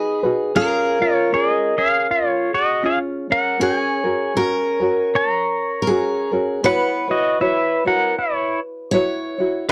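A languid, dreamy Hawaiian excerpt at 79 BPM with a lilting swing features a bright, clean electric pedal steel guitar sliding up front through fingerpicked, compressed melody lines with volume swells, over a warm picked acoustic guitar second line and a light, thumb-plucked tenor ukulele accompaniment, moving from B6 through C# and F#add9 to F#7sus4 in a dry, close 1970s-style studio sound with light reverb.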